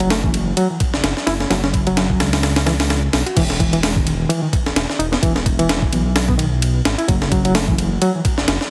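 A gritty, sampler-style breakbeat kit sits up front in this funky, energetic breakbeat fragment, its thumpy kick and high-tuned snare joined by hi-hat, ride and crash cymbal with a light swing on the sixteenths. Beneath it, a dark, detuned sawtooth bass rumbles deep and sustained, its unison voices beating against each other and roughened by tube saturation. A reedy electric piano plays the riff with a fast tremolo, its clean tone colored by tube saturation and tape echo. At 3.4 seconds the track moves into a drop that carries through to the end. Light reverb and heavy multiband compression give the whole mix a squashed, radio-like sound.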